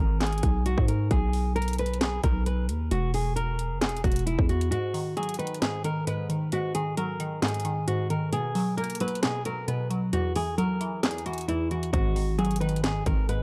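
A fingerpicked nylon-string guitar melody, softened by a low-pass filter and tape echo, opens this eerie, hard-hitting half-time trap excerpt at 133 BPM in G# minor alongside a growling, buzzy 808 bass and a trap kit of hard-clipped kick, sharp snare, metallic hats and handclaps, with a glassy, crystalline wavetable pluck joining at 4.7 s as the bass drops out and the kick falls silent until 11.9 s, all in a dark production with light reverb.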